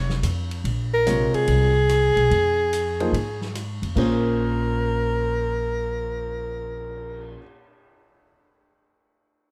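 Searching and hypnotic, this brief modal jazz fragment swings in 4/4 with a loose, rolling eighth-note lilt. A soprano saxophone carries the melody up front, its tone tinged with light vibrato as it lingers in a narrow upper-middle register. Beneath it, a woody, thumpy pizzicato upright bass sits close and present, while a vintage drum kit in a natural studio room adds a punchy kick, a medium-tuned snare, rim clicks, hi-hat, ride, a crash and a cymbal swell, all with a rolled-off top. The harmony moves from a rootless Bbm to Fm over Bb, and a warm baby grand piano with long sustain enters at 1.1 seconds before the harmony settles on Bbm9 as a new section begins at 4.0 seconds. A light reverb gives the small group an intimate glow.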